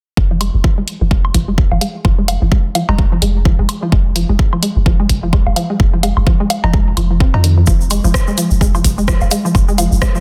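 Quirky and clinical, this minimal techno cut in F minor moves at 128 BPM with swung 16ths, anchored by an up-front, punchy, tape-warm electronic kick and a deep sine sub bass with a pitch-drop attack and sidechain pumping. A squelchy, resonant blip pluck riff, detuned and chorused with tape echo and its own sidechain pumping, carries a filter sweep throughout. A house kit of hi-hat and rim click with a soft-clipped snare joins analog woodblock and cowbell soaked in dub echo, a grainy egg shaker enters at 7.7 s, and the mix sits in digital ambience under a dense, heavily limited master.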